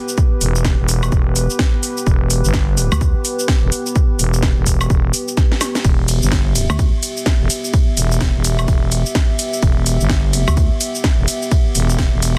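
A growling, thick FM bass sits up front in this aggressive, swaggering bass house excerpt at 127 BPM in E minor, its tube saturation and sidechain pumping driving the groove beneath a punchy electronic kick and a house kit of cracking snare, metallic hats, cabasa, woodblock and ride cymbal, with a drum fill at 5.4 seconds. Short bursts of a detuned, pulsing pluck wobble bass with chorus punctuate the track at 2.9, 6.7 and 10.5 seconds, while a deep, moody analog pad holds sustained Em chords quietly in the background, pumping under the sidechain. The mix is dry, dense and heavily limited, with a swung sixteenth-note feel.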